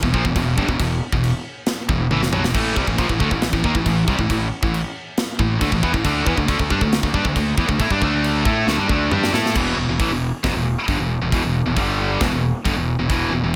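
A dark, epic heavy metal excerpt in a straight 4/4 feel, driven by a scooped, high-gain guitar riff up front over a second, compressed distorted guitar in the background, a growly fuzz-toned fingered bass, and a tight, polished drum kit with bright cymbals whose fills land at 2.1 and 8.7 seconds before the chords shift to a new section at 9.6 seconds, all set in light reverb.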